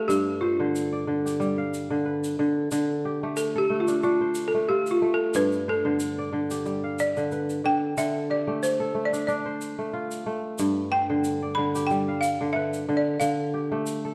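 A woody, buzzing balafon played with rubber mallets carries the melody in this reflective, flowing excerpt of West African string and xylophone music, set over crisp, ringing fingerpicked kora arpeggios up front, a faint grainy tube shaker, a gently swung 4/4 feel, chords alternating between G and Dm, and a moderate recital-hall reverb in a dark, warm production.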